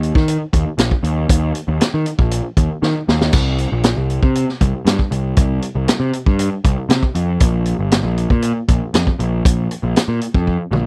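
A dry, close 1970s-style studio sound frames this trippy, hypnotic psychedelic rock excerpt in C minor at 118 BPM, where a round, punchy fuzz bass, picked and overdriven, sits up front beside a vintage acoustic drum kit with a high-tuned snare, tight kick and dark cymbals, both playing throughout and marked by drum fills at 2.8 and 10.5 seconds.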